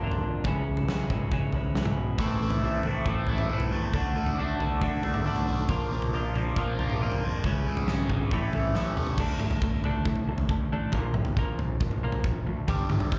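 Cathartic and angsty, this short cut from a quiet-loud alternative rock performance drives along at 137 BPM in a straight 4/4, heard live through a club PA with light reverb and small-room ambience. A bright, twangy twelve-string electric guitar plays clean arpeggios with slapback echo over a growly fuzz bass sitting in the background and a big, dark rock kit with a punchy kick. An overdriven guitar riff with phaser and slapback echo joins at 2.2 seconds over chords moving from C#m through Am, D and Bb, and after a drum fill the riff drops out at 9.2 seconds as the band shifts to D5 and Bb5 power chords.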